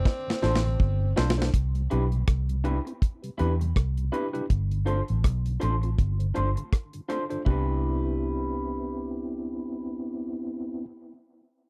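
Lovers rock reggae at 81 BPM in C major, tender and romantic, opens with a brief breathy, whispered tenor saxophone phrase touched by tape echo over a drum fill from a tight, dry reggae kit. A round, foam-muted electric bass sits up front while a soft, flute-like tonewheel organ with key click, a worn, slightly out-of-tune tine electric piano with light overdrive, and twangy guitar stabs through a small old amp with spring reverb sway between G9sus4 and Cmaj7 in a close, dry 1970s-style studio sound.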